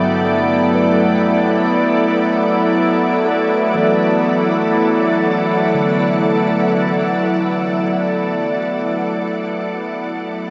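Bathed in a deep, lingering shimmer reverb, this serene, spacious ambient excerpt sets an evolving, warbling wavetable pad up front, its detuned, vintage chords blooming slowly through Gadd9 and Bm before settling on D at 9.2 seconds. Behind it, muted felt-like synth keys trace soft, intimate arpeggios through chorus and delay, while a sawtooth analog drone with pulse-width modulation hums in the background and an airy, breathy wind-like noise texture enters at 0.1 seconds. The whole passage fades out from 6.6 seconds to its cut at 10.5.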